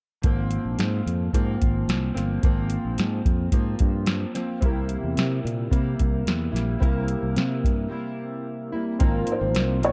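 Nostalgic and hazy, this bedroom-pop excerpt at 110 BPM in Ab major rides a dry, overdriven vintage rhythm box with deep kick, crisp snare and metallic hats, an up-front fingered electric bass, and a full-bodied fingerpicked acoustic guitar carrying analog chorus and warbly pitch drift, while detuned lo-fi synth keys join at 4.6 s and a felt-muted upright piano with audible action noise and lush chorus slips in at 9.3 s, set in a dark production with light reverb and digital ambience.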